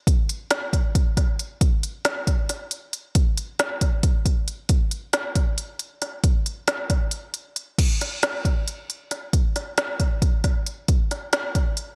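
An electronic drum kit, re-recorded in a large room and placed up front, opens the excerpt at 0.1 s, driving a wistful, bright rock groove in 7/8 at 272 BPM counted in eighths, with a deep kick, woody snare, crisp hi-hats and crash cymbal. The pattern pauses for brief breaks at 1.3 s and 7.1 s before shifting into a new passage at 7.8 s. Light reverb and a bright 1980s-style digital production frame the kit until it stops at 11.9 s.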